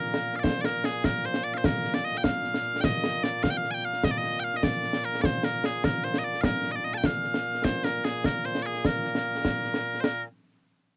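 Scottish traditional pipe music in a straight 6/8, this short excerpt cut from a longer piece carries a ceremonial, proud mood. Loud, piercing bagpipes carry the melody from the first moment to the end at 10.2 seconds, sitting up front with a continuous, bright tone that spans from a low register up to high, keening notes. Concert snare drum and concert bass drum accompany them almost throughout, close and dry in character, with bright cymbals ringing through. The whole passage stays within a single section, giving a steady sense of occasion. A light reverb surrounds the sound, and the home cassette recording lends it a slightly worn, homespun quality.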